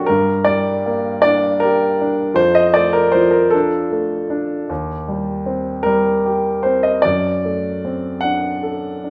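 Swaying in a rubato 6/8 at 52 dotted-quarter beats per minute, this yearning, melancholic fragment of a romantic classical nocturne features a solo grand piano, warm, polished and up front, ranging from Eb2 to F#5 through a Gm, Dm/F, Cm/Eb and D7/F# progression, set in a moderate recital hall reverb.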